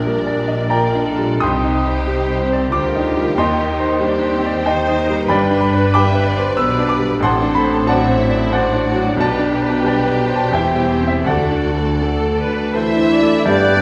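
Classical in 3/4 with a rubato feel, this lush, passionate fragment of a longer piece is led by a bright, brilliant baby grand piano up front, its long sustain ringing over rich, bowed violin sections that carry a distant melody and a focused second line, while smooth viola, cello and woody double bass sections fill out the harmony and bass beneath. At 12.8 s a roomy French horn section adds sustained chords and a mellow trumpet plays stabs, and at 13.5 s a pure, hollow flute, a punchy clarinet, a vintage oboe and a bassoon join briefly with second lines and accompaniment. A wet scoring-stage reverb gives the sound a spacious glow.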